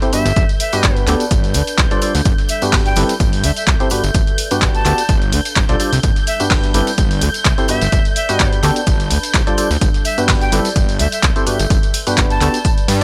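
Feel-good and uplifting, this piano house passage moves with a light swing, cycling through jazzy seventh chords that keep returning home. A punchy electronic kick sits up front alongside a fat, saturated sawtooth bass, both driving the groove, while the bass and the hollow, organ-like stab riff breathe with sidechain pumping, the stab coated in lush chorus. The beat is filled out by an analog drum machine's handclaps, hi-hat and tambourine, a very quiet, gritty sampler-style kit adding hi-hat, shaker and snare, and a separate tambourine tucked in the background. A breathy, bright jazz flute carries the melody with vibrato, a crisp chiff and analog delay, entering at 0.1 seconds and ending at 12.7 seconds. Alongside it, a muted, veiled chamber violin section holds sustained chords, and a warbling, nostalgic tape-like pad with chorus and built-in reverb drifts in the background. The whole mix has a dry, gritty hardware character set in digital ambience, and it is cut from a longer piece.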